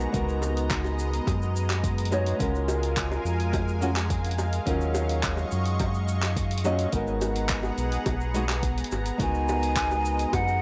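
A straight 4/4 deep house groove at 106 BPM, built from a deep, tape-warm electronic kick, a kit of cabasa, handclaps and hi-hat, and tight, high-tuned bongos in the background, carries this relaxed, smooth sunset chillout excerpt. A round, dark analog bass sits up front under a small fingerpicked nylon-string guitar softened by a low-pass filter and delay, while a lush, thick unison pad adds chorus, phaser and 12-bit sampler grit over chords moving from Db13sus4 through Gbmaj9/Db, Ebm9 and Abm9, until a breathy, hollow jazz flute with vibrato and chiff enters at 9.2 s, all set in a lush hall reverb.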